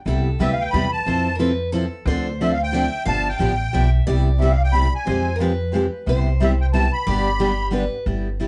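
Heard from further back in a moderately ambient studio with a dark top end, this short cut from a longer acoustic string swing piece in the jazz manouche style has a charming, lively air. It moves at a brisk 180 BPM in 3/4 with a swung eighth-note feel in C major, cycling through Cmaj7, Fmaj7, Dm7 and G7 before a colourful Fmadd9 and a close on G. Up front, a reedy musette accordion with a shimmering, boxy character carries the melody from 0.4 seconds, while a woody, thumpy pizzicato upright bass on steel strings anchors the low end. Two picked steel-string acoustic guitars with fresh strings and audible finger squeak fill the middle: a boxy parlour instrument plays a second line above the chords, and a bright concert guitar provides accompaniment. A picked archtop guitar adds further comping from the background, and the bass and concert guitar carry on until 8.5 seconds, after the others have stopped.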